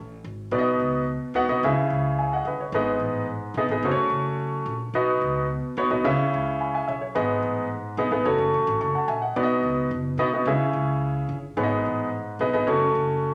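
A warm grand piano sits up front in this joyful, uptempo 1960s-style soul excerpt, carrying the accompaniment from 0.5 seconds across a broad range, from low G#2 up to C#6. Underneath, a pizzicato upright bass on gut strings gives a woody, thumpy pulse; it is heard first, alone at 0.0 seconds, and then sits lower in the mix than the piano. The straight 4/4 groove moves through a repeating cycle of B, C#m, G#m and F#m, giving the passage a buoyant, circling feel. A wet, large studio reverb wraps the sound in a roomy glow. Cut from a longer piece, it runs to 13.3 seconds and feels like one stretch of an ongoing, good-natured groove.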